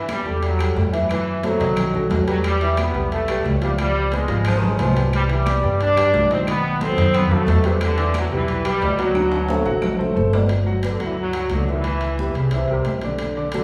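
Driven by high-tuned congas, ringing metal-shell timbales and faint, dry claves at a straight 179 BPM in 4/4, this sunny, joyful salsa in G major sets a tight, bright trombone section on the melody over a growly, up-front pizzicato upright bass and a worn, slightly detuned upright piano with audible action noise, while a breathy, raspy baritone saxophone slips in briefly at 4.5 seconds, a drum fill arrives at 9.2 seconds, and the claves stop at 10.0 seconds, the whole piece set in a reverberant recital hall.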